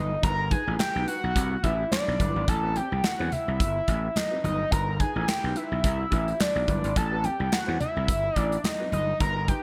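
A fat analog lead of sawtooth and square waves with vibrato and delay carries the melody up front in this danceable, late-night early-eighties boogie funk excerpt at 107 BPM with swung 16ths, riding over a growly overdriven slap bass, a tight, polished drum kit of kick, snare, hi-hat and handclaps in gated reverb, thin-skinned hard-hand congas, and a dark, clean chorused electric guitar riff in the background, over a Gaug7, Cmaj7 and Am9 progression with bright 1980s-style digital production.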